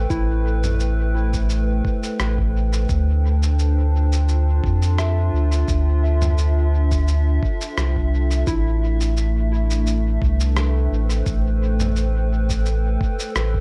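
A warbling, detuned tape-like pad opens on sustained chords moving from Am7 to Dm11 and back, joined at once by gentle FM bell arpeggios set in the background with chorus and tape echo, and a round sine sub bass sitting up front. A compressed, muffled electronic kick thumps in at 0.1 seconds alongside a pitched-down lo-fi sampler kit of rim clicks, shaker and toms soaked in dub echo, both carrying the tape-warm character of a small-room re-recording. This hazy, deep ambient dub cut from a longer piece has a lightly swung feel and a dry, echo-heavy mix.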